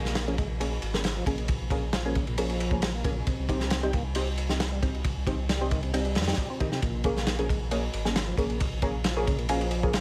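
A lightly overdriven tonewheel organ riff opens this gritty, swaggering breakbeat cut at 135 BPM, turning slowly through a rotary speaker with chorus vibrato and tape echo, alongside nasal, band-passed sawtooth chord stabs treated with phaser, analog chorus and tape echo, and a deep, thick saturated sub bass. From 0.1 seconds a crunchy, up-front breakbeat kit drives it, with a tight kick, a medium-tuned snare and a dark ride cymbal under a rolled-off top. The harmony moves from Bbm7 to Cm and back over a bed of vinyl crackle and light studio reverb.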